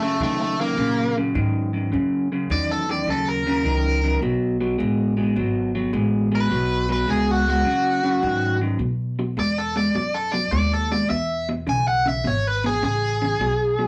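A biting, bright overdriven guitar solos up front from the first moment over a slightly broken-up, compressed riff from an electric guitar through a small old amp and a woody, growly pizzicato upright bass, giving this rollicking, swaggering electric blues shuffle in B mixolydian at 105 BPM a rough rehearsal-room sound with warm saturation and moderate reverb, as the harmony settles onto B and E chords after the solo ends at 8.8 seconds in this short excerpt.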